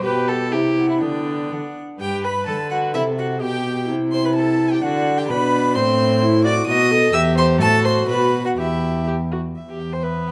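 Moving in a quick 2/4 at 120 to 131 BPM with a flexible, rubato feel, this graceful, spirited classical-period movement for string quartet is cut from a longer piece. It opens in G major and turns toward E minor at 5.8 s, with all four bowed players, each in period style on gut strings, sounding together from the start through 10.3 s. The first violin carries the melody high between E5 and E6 with a rich, close tone. The second violin adds a reedy inner line beneath it, and the viola fills in the accompaniment with light vibrato. The cello anchors the bass from E2 to D3 with a distinctly nasal, up-front quality. A recital hall reverb with a 1.7 s decay gives the ensemble a wet, resonant setting.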